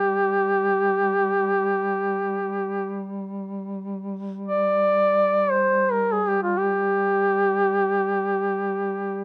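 Close, detailed microphones and a light reverb give this short Caucasian folk lament an intimate, solemn character full of longing. A warm duduk sits up front with the melody, its scooped notes, vibrato and smooth top ranging from F4 to D5. Beneath it, a dark, soft-attacked duduk holds a G3 drone with its own vibrato and scoops, and the music slows from 4.8 seconds until the fragment ends at 9.2 seconds.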